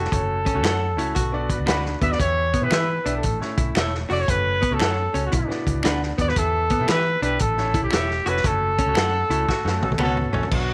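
Driving and passionate, this swung 1960s-style soul fragment puts a punchy trumpet with scooped notes and light vibrato up front, backed by a clear baby grand piano with audible action noise and a round, foam-muted electric bass. A vintage drum kit with a punchy kick and dark cymbals, a compressed hollow-body jazz guitar riff, and slightly broken-up stabs from an electric guitar through a small old amp with slapback echo fill out the groove, while very quiet finger snaps join at 0.6 seconds. A distant, roomy horn section with octave doubling adds a second line at 1.5 seconds and again at 9.8 seconds, as band accents and a drum fill close the cut in a small room with light reverb.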